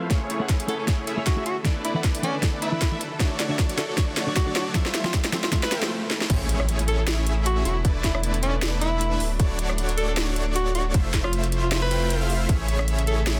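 Lush and euphoric, this half-time future bass excerpt sets a clear, jazz-style alto saxophone solo with vibrato and scooped notes over huge, detuned supersaw chords, a dark bowed chamber string section carrying vintage 12-bit sampler grit, a fingered clean electric guitar that stops at 5.6 s, a hard-clipped electronic kick and a trap kit with sharp snare and metallic hats, while very quiet risers and swells build toward the drop at 6.3 s, where an impact hits and a saturated sine sub bass enters under a dense, heavily limited master.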